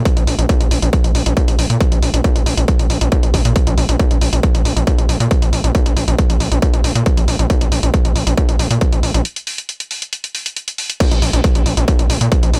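A straight pulse drives this industrial, peak-time techno excerpt, built on a distorted, layered electronic kick that sits up front with the character of a large room, while a techno kit adds warm hi-hats and crash cymbal that pump against the sidechain. A gritty, aggressive synth bass, mixing sawtooth, sine and triangle tones with oscillator sync and ring modulation, hits with a fast attack and sustained notes, pushed hard through distortion and tube saturation and pumping up front. The dry, relentless groove moves into a break at 9.3 seconds before the drop lands at 11.0 seconds.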